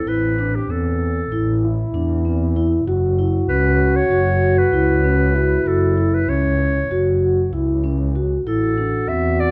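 A dark, bowed double bass sits up front with expressive vibrato and portamento beneath a warm, classical-style clarinet melody, a mellow French horn second line and ringing, metallic vibraphone arpeggios played with soft mallets and the motor off, giving this pensive, hypnotic contemporary chamber piece in 9/8 a dark, warm, lightly reverberant sound in a brief cut from a longer work.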